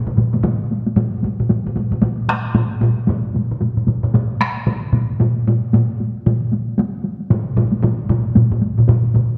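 A close, dry taiko ensemble struck with heavy sticks opens this powerful, ceremonial piece of Japanese traditional drumming, sitting up front from 0.1 seconds. A second taiko group, also with heavy sticks, plays alongside it with a compressed, saturated edge. A third taiko ensemble enters at 0.2 seconds, slightly lower in the mix and carrying the ambience of a live room. The groove moves at 113 BPM in 4/4 with a swung sixteenth-note feel, and the drums play together through to about 9.4 seconds, cut from a longer piece. A lush scoring-stage reverb surrounds the ensemble, giving the dark production a sense of ritual scale.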